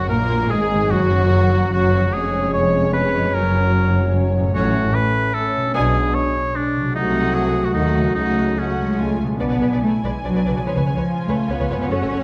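A clear, up-front solo oboe carries a second line over mellow, distant French horn chords until both drop out at 9.2 s, while a smooth, distant violin section sings the melody above a darker second violin section, expressive violas with portamento, warm cellos, rich double basses and a ringing fingerpicked harp in arpeggios, all set in a moderate scoring-stage reverb for this stormy, dramatic romantic classical excerpt in a rubato triple metre.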